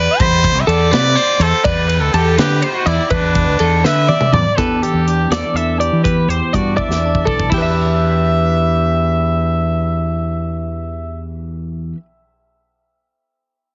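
This excerpt has a heavily compressed, radio-like sound with a dull top and little reverb, giving a dry, boxy closeness to a restless, wistful blend of math rock and midwest emo in E minor. It moves at 82 BPM in a straight 6/8, counted in dotted quarters. A clear, distant trumpet carries the melody with light vibrato in a pop style, while a bright, twangy twelve-string electric guitar spins arpeggios and a growling fingered bass, overdriven and punchy, sits up front underneath. A modern studio drum kit with a medium-tuned snare and a punchy kick plays from 0.2 to 7.6 seconds, with fills at 3.8 and 6.8 seconds. At 4.6 seconds a scooped, clean electric guitar joins on an Em7 chord, filling out the accompaniment through the final stretch as the trumpet rests at 11.2 seconds.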